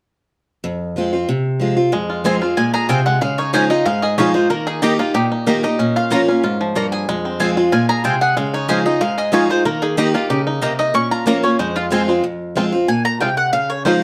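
Rustic and haunting, this short bluegrass excerpt in F minor runs at a brisk 186 BPM in straight 4/4, cut from a longer piece. A bright, boxy parlour-style steel-string guitar, picked and up front, opens alone at 0.6 seconds, laying down the accompaniment over a cycle of Fm, Dbadd9, Eb and Bbm. A twangy, percussive banjo played with fingerpicks joins at 1.9 seconds carrying a melody, soon followed by two mandolins with woody double strings: one, bright and up front, punctuates with stabs, while the other, mellower, sings a melody that reaches highest of all. The production is dark and warm overall, set in a moderate studio reverb around the acoustic strings.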